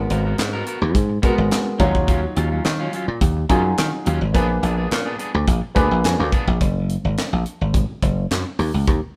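Late-night and slick, this short fragment of early-eighties boogie funk rides a straight 4/4 feel, played by a band live in one room with light reverb. A natural-sounding acoustic drum kit sits up front with a tight kick, a high-tuned snare, hi-hat and handclaps, carrying a small-room character. Alongside it, a dry thumbed slap bass, bright, foam-muted and punchy, comes through direct and equally forward. A warm grand piano comps through Abm9, Ebm9 and Bb7b9, closing its part with a fill from 5.5 to 6.6 seconds, while a fingered electric guitar plays a twangy, slightly broken-up riff with tube saturation, set lower in the mix. After 6.6 seconds only the bass and drums continue as the harmony shifts to Gbsus2 and then Dbsus2.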